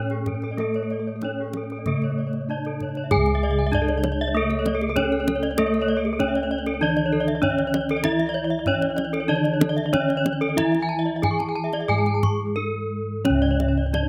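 A dry, close outdoor recording of Balinese gamelan in C# pelog at 87-97 BPM, this hypnotic, brilliant excerpt sets a bright, horn-mallet bronze metallophone with shimmering paired-tuning beats carrying the melody up front, a soft, padded-disc metallophone accompaniment in the background, two metallophone arpeggio lines (one airy, one dark and smooth) touched by slapback echo, round, mellow bossed gongs in the bass and deep kendang played with hard hands, with a break from 12.2 to 13.3 seconds.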